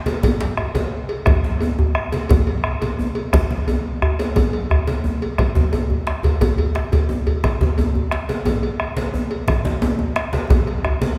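A straight 12/8 pulse at 117 BPM drives this earthy, festive West African drum ensemble fragment: a deep, dark bombo sits up front beneath a distant djembe with metal rattles and hard hands, a second medium-tuned djembe, bright, damped, low-tuned congas played with soft hands in the background, and a metallic, vintage-toned cowbell, the ensemble ringing in a church's long reverb until a drum fill arrives at 10.5 seconds.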